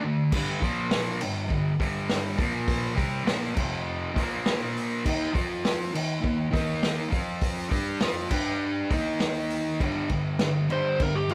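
A straight, steady four-beat pulse drives this raw, menacing garage rock excerpt: a bright, double-tracked fuzz guitar picks a heavy power-chord riff, alone for a moment before an up-front vintage kit of tight kick, medium-tuned snare, hi-hat and crash with a rolled-off top joins at 0.3 seconds. Near the close, at 10.7 seconds, a warm, overdriven slide guitar enters with a short melodic solo line. The whole take sits in a moderate stone-room reverb with the rough feel of a rehearsal-room recording.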